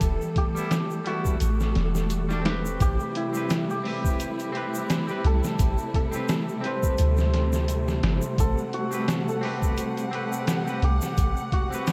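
A deep, round 808-style bass sits up front in this dark, cinematic trip hop piece at 86 BPM with a swung 16th feel in A dorian, beneath a muffled, pitched-down sampler drum kit with a thumpy kick and 12-bit grit, a faint tube shaker, lush bowed strings holding sustained chords, a shimmering hammered santur melody with tape echo, and a bright, twangy clean electric guitar that joins at 0.5 s with tremolo and tape echo, while the harmony moves from Em to Am7 in a dreamy mix soaked in huge ambient reverb.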